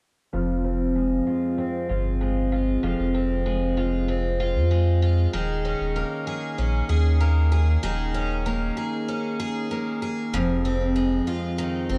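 At 0.3 seconds a picked twelve-string acoustic guitar and a sub bass enter together, opening this short folktronica fragment in a delicate, autumnal mood with a steady, straight pulse. The guitar plays arpeggios up front, its octave-doubled strings giving a shimmering dreadnought tone that is roughened by vintage 12-bit sampler grit and shaped by a low-pass filter and delay. Beneath it, the sub bass is deep, round and mellow, a sine-like tone with a fast attack that sustains under each chord. Both parts carry a filter sweep through the opening stretch as the harmony moves from Fm to Eb7sus4. At 10.3 seconds the music shifts to a new section on Fm7, and both parts play on until the fragment breaks off at 12.0 seconds. Light reverb and a small room ambience give the whole a close, intimate setting.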